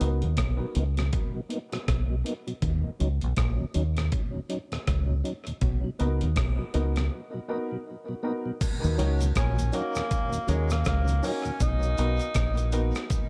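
A deep, round dub bass sits up front from the opening alongside a gritty, compressed breakbeat kit with a thumpy kick, rim clicks, hi-hat and crash, all overdriven and roomy in a small-room way. Beneath them a mellow, dark tonewheel organ carries the accompaniment with chorus vibrato, key click and tape echo while a filter sweep runs through the first 8.6 seconds, and a worn, woody, slightly detuned upright piano adds echoing stabs, returning at 6.0 seconds. This dub reggae fragment, cut from a longer piece, moves at an unhurried, swung pace over Bmaj7 and Ebm7 chords, feeling spacious and heavy with little reverb but plenty of echo. At 8.6 seconds a faint, band-limited cabasa enters in the background, and at 9.4 seconds a distant tenor saxophone with light vibrato takes a brief solo melody, its tail trailing through tape echo. The organ drops out at 11.5 seconds, leaving bass, drums, piano, cabasa and sax to close the passage.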